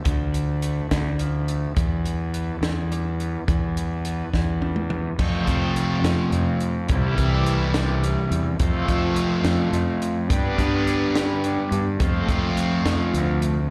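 A cranked stack guitar with overdrive, subtle chorus and slapback echo opens this cool, moody indie rock fragment in 6/8 together with a bright, twangy twelve-string electric guitar sitting in the background with its own slapback, both playing riffs over chords that move from Dmadd9 to Em. A round, fuzzed fingered bass sits up front with a compact cocktail kit whose dry, punchy kick, high-tuned snare and dark cymbals also sit forward. A drum fill at 4.3 seconds leads into a second section cycling through F, C6 and G, all heard through a venue PA with light recital hall reverb.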